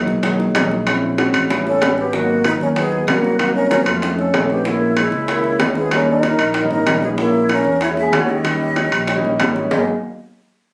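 A driving, straight 4/4 pulse at 190 BPM anchors this sophisticated Afro-Cuban jazz in G# minor, with ringing metal-shell timbales up front, round, low-tuned bongos in the background and a bright, direct fingered electric bass underneath. A natural-sounding grand piano with audible action noise comps through rich extended chords and adds a fill at 8.8 seconds. From 1.7 seconds a dark, breathy trombone with light vibrato carries the melody from a distant, roomy space, while a metal jazz flute with lifted highs and an unsteady, soft-attack tone plays a second line above it, all in a phone-in-the-room capture with light reverb and compression cut from a longer piece.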